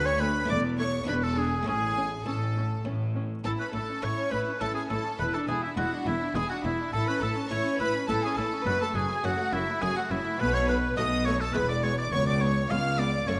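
In a straight triple metre, this lively, festive baroque-style concerto movement, cut from a longer piece, sets an up-front oboe with light vibrato alongside a focused symphonic violin section on the melody. A close, expressive chamber violin section carries a second line, while smooth violas enter at 0.2 s. Rich cellos and double basses anchor the bass, and a muted, lute-like buff-stop harpsichord sits very quietly underneath, all within the moderate bloom of a scoring stage.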